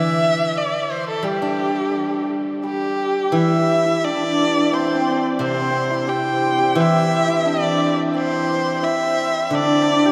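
Bathed in a huge, wet reverb that places the players in a vast, echoing space, this graceful and festive excerpt of Chinese traditional chamber music moves in a rubato 2/4 around 87 BPM. A clear, focused erhu sits up front carrying the melody with vibrato and portamento, over a silvery steel-string zither, also up front and plucked with fingerpicks, which provides ringing accompaniment in a lower register. At 2.6 seconds a shimmering hammered dulcimer joins with a second line that rings through the rest of the excerpt.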